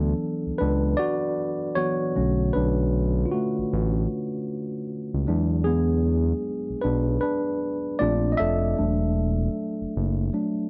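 A worn, slightly out-of-tune tine electric piano leads this relaxed neo-soul and R&B fragment, lightly overdriven and heard up front as if through built-in speakers, moving through D6, Bm9, E9, Bbmaj7 and E7sus4. Beneath it, a mellow synth bass blends sawtooth and square tones with a fast attack, sustained notes and vibrato, and it drops out at 10.3 seconds as the piano carries on to 10.7. At 77 BPM in 4/4 with a swung sixteenth-note feel and tuning at A4 = 438 Hz, the recording has the dry, close sound of a 1970s-style studio, with light reverb and a faint mains hum.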